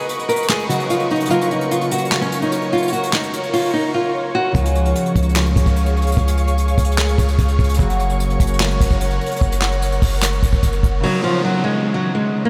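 A dreamy mix soaked in a huge ambient reverb gives this wistful trap and hip hop excerpt a hazy, floating quality, moving in a half-time 4/4 feel at 148 BPM in F# major. A small, fingerpicked nylon-string guitar carries the melody up front through a low-pass filter and tape echo, over a ringing concert harp that supplies filtered accompaniment throughout. An ethereal, airy pad holds slow-attack, detuned chords with ensemble chorus and its own reverb, while a jazz brush drum kit with a boomy kick, medium-tuned snare, hi-hat and handclaps sits close in a studio-room sound. The opening break pauses in a silent gap at 3.7 seconds, and at 4.5 seconds a deep, mellow 808-style bass arrives with long, decaying sine notes as the guitar drops out. The harmony moves from Badd9 through F# and C#, and at 11.0 seconds the guitar returns over the harp while an electronic downlifter closes the passage.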